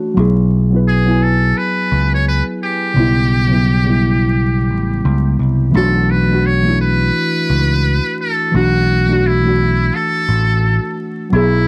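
Lo-fi hip hop in B minor at 86 BPM, with a lazy 16th-note swing and a nostalgic, hazy mood, this excerpt is cut from a longer piece. Muted, felt-like synth keys open the track at the start, their soft, dark tone coloured by chorus, cassette-tape wear and a low-pass filter, with a fast attack that decays away. A picked electric bass arrives at 0.2 s, bright, direct and amped, sitting up front. At 0.9 s a trumpet with a metal mute takes the melody in a jazz style, its buzzy, thin sound carrying vibrato and a punchy, forceful edge while also feeling distant and roomy behind its own low-pass filter. The harmony moves through E/B, a rootless A9/B, Bm9 and Dadd9/B across two passes of the same section. A small, wet room and the grain of a home cassette recording with vinyl crackle give the whole a close, worn character.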